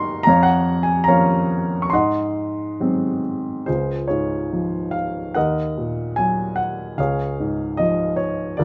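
An unhurried rubato pulse of 67-75 BPM in 4/4 carries this short excerpt of lyrical classical solo piano, tender in mood and settling into Db major at 3.7 seconds after opening on Bbm/F and Ab7. A single warm grand piano plays alone throughout, spanning Db2 to Db6 with a short sustain and sitting up front in a moderate studio reverb. Its harmony moves from Db through Ebm and back to Db by 7.0 seconds.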